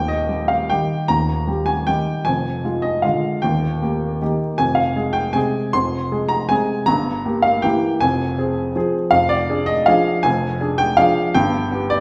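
A clear upright piano opens alone at 0.0 seconds, playing an elegant, nostalgic classical waltz in 3/4 with a flexible rubato feel, moving between 148 and 173 BPM. Its tone is woody and natural, with a short sustain and audible action noise that gives the playing an intimate character, and the instrument sits up front. The range reaches from Eb1 low in the bass to C6 in the treble. A wet recital hall reverb surrounds the piano, placing the listener further back in the room. The harmony begins on Eb, passes through Fm and diminished colourings, and arrives on G at 11.3 seconds in this twelve-second passage cut from a longer piece.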